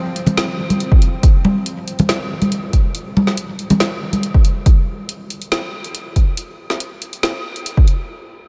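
Deep dubstep at 140 BPM in a brooding, dark half-time 4/4: a bright, tense, string-like drone holds an F5 chord from F3 to C4 for the first 1.3 seconds, close, hard-handed congas carrying dub echo sit up front until 4.2 seconds, a punchy layered electronic kick drives from 0.9 seconds, and a deep house kit adds a woody snare and dark hi-hats, all soaked in a dreamy cathedral reverb in this excerpt from a longer piece.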